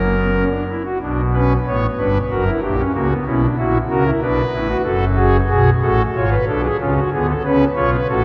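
A long, wet church reverb with a tail of about 3.5 seconds surrounds the sound, and the top end is dulled, with little heard above 7.9 kHz. Within that resonant space, a pipe organ on foundation stops sits up front, its tone thick and romantic in voicing, spanning from a deep F#1 to C#5 at the top. This short passage, cut from a longer piece, is a baroque-style classical fugue in three voices, moving in a straight triple metre with a lively, joyful character. The organ plays alone throughout the 8.2 seconds, with the main section getting underway at 1.0 seconds. The harmony pulls repeatedly between minor-key tonic chords and bright dominant sevenths, closing on a C#7 that leaves the music poised to continue.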